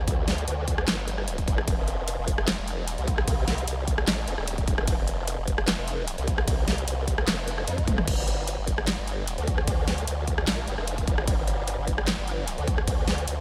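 A half-time groove at 150 BPM in 4/4 drives this heavy, chaotic dubstep excerpt, tuned to A4 = 439 Hz, with a punchy electronic kick and an up-front dance kit of huge snare, metallic hi-hats, handclaps, rim clicks, ride, crash and toms, both re-recorded in a small room. A detuned, compressed formant-sweep wobble bass wobbles between Eb1 and F2 with chorus and overdrive. A drum fill bursts in at 7.9 seconds, all under a light reverb.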